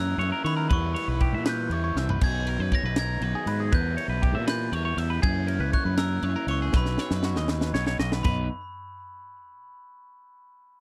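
A dry, close studio sound with a 1970s character gives this short math rock and midwest emo passage an intimate, tightly focused feel, bright and intricate in mood and set in a straight 6/8. A sparkling glockenspiel struck with hard plastic mallets carries the melody high up, its bell-like, metallic tone ringing over a clean, twangy electric guitar whose compressed, picked arpeggios shimmer through a phaser. Underneath, a crunchy, double-tracked overdriven guitar plays a picked riff, while a growling fingered bass, overdriven and up front, anchors the low end with a direct, amped edge. A crisp, polished fusion drum kit with a high-tuned snare, punchy kick, crash, ride and toms adds an airy studio-room openness, breaking into fills at 2.0 seconds and again from 6.7 to 8.2 seconds. The harmony moves through colourful extended chords such as sixths, sevenths and ninths before settling on a plain major chord as the passage turns toward a new section.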